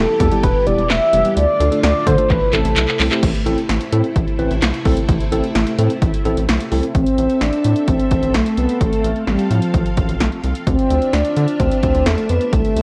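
This melancholic yet driving synth-pop fragment opens on a round, horn-like synth lead over lush string-machine chords and a rubbery, bouncy square bass, with a punchy analog drum machine arriving at 0.2 s alongside a worn, slightly out-of-tune tine electric piano that carries the middle stretch while the lead rests, until the lead returns at 6.9 s, the recording bathed in recital-hall reverb and the warbling pitch drift of old cassette tape.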